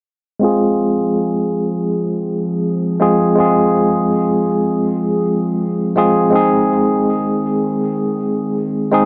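From 0.4 seconds, a bright, up-front tine electric piano colored by harmonic tremolo, tape echo and a filter sweep plays accompaniment over a warbling, nostalgic tape-like pad of detuned, slow-attack chords with chorus, opening this brooding, cinematic trip hop excerpt at 81 BPM in F minor, moving from Fm to Ab at 6.3 seconds in a light digital ambience.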